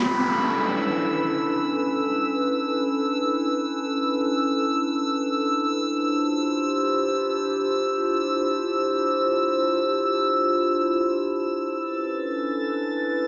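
Drum and bass in free time and B minor, this dark, atmospheric fragment opens with an electronic downlifter over its first 3.0 seconds, while a warbling, detuned tape-like pad with vintage sampler grit and chorus holds mellow sustained chords shifting from Bm11 to Dm11 and back, and a glassy, drifting sine texture with chorus floats high above, all set in a wet digital room with a small-speaker, lo-fi character.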